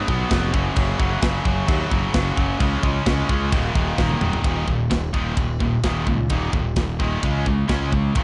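A straight 4/4 heavy metal excerpt, aggressive and heavy, cut from a longer piece, where a scooped, high-gain, double-tracked guitar riff sits up front over a growly fuzz bass and a tight acoustic drum kit with china, ride and toms, moving through power chords such as B5, Gb5 and Db5 before a drum fill at 4.0 seconds leads into a second section, all in a dark, dry production.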